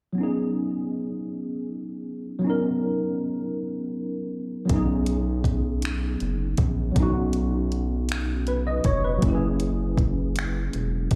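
A tine electric piano opens this slow six-eight R&B excerpt on its own, settling on a B6 chord in B major. Its tone is worn, slightly out of tune and clean, played through a combo amp with ensemble chorus and a slapback echo. The mood is tender and intimate, moving at 53 beats per minute in dotted quarters with a straight feel. At 4.7 seconds a round analog bass and a smooth R&B drum kit arrive together. The bass is deep, mellow and saturated, a square-and-sine, wave-folded tone with a fast attack and long sustain, while the electronic, produced kit adds finger snaps, a soft kick and tape-warm hi-hat. The harmony moves to F#9 at 9.2 seconds before the cut, with the three parts sitting up front in a live club sound heard through the venue's PA, touched by light reverb and digital ambience.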